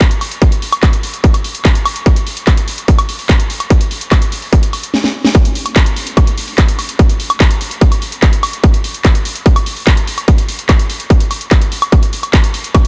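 Alien and psychedelic, this trance excerpt in straight 4/4 pairs an up-front, distorted electronic kick drum with a layered techno kit of handclaps, cracking snare, woodblock and warm hats re-recorded in a large room, with a drum fill at 4.9 seconds tipping into a drop at 5.3 seconds.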